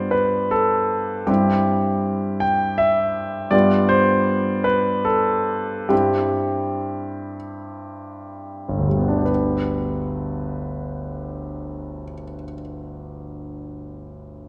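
A romantic classical character piece for solo piano, this hopeful, lyrical excerpt unfolds in a slow, rubato 6/8 in G major at roughly 28-55 BPM (dotted quarters), easing its pace from 2.4 to 9.3 seconds. The concert grand sounds clear, intimate and up front, spanning G1 to G5 with deep bass, long sustain and audible action noise, all set within a lush concert hall reverb. The harmony alternates between G7 and C over G before resolving to G at 9.3 seconds, where a new section begins.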